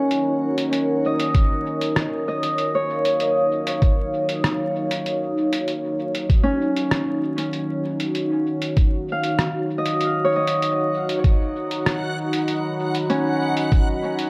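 A thumpy, muffled electronic kick sits up front through this hazy, spacious ambient dub excerpt alongside a pitched-down, tape-warm sampler kit of hi-hat and rim click, all bathed in a dark production with wet spring reverb and vinyl crackle. Also up front, a deep, moody pad of detuned sawtooth unison and sub octave holds sustained chords moving from Ebm7 to Db13sus4, while a mellow, thumb-plucked Celtic harp rings out arpeggios through dub echo. After a brief flicker at the very start, a reversed, granular texture swells back in from 11.0 seconds, bright and dreamy, adding a detuned shimmer.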